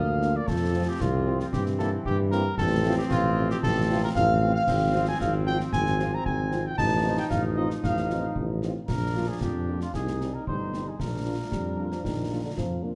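A proud, festive military-style march for wind band in a straight 2/4 at 114 BPM, where an up-front, mellow cornet carries the melody with light vibrato over a prominent tuba bass, bright trombone chords, a very quiet horn section, close snare, bass drum and dark-toned clash cymbals, and a euphonium second line that joins only at 11.5 seconds, all set in a moderate large-studio reverb.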